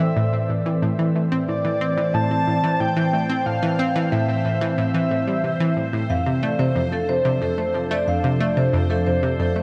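Hypnotic and cosmic, this sequencer-driven ambient space music opens with a round, up-front analog pluck riff, a morphing wavetable pad run through phaser, a very quiet warbling analog drone in the bass, and a bright, bubbling stepped-filter texture that fades in from the background. A breathy, flute-like synth lead with vibrato, chorus and delay sings a soft melody until 5.7 seconds, and at 6.1 seconds the harmony moves from A minor to F6 as a dark, metallic vibraphone takes up ringing arpeggios with delay. The whole excerpt sits in a wet, huge ambient reverb that gives the parts a vast, floating sense of space.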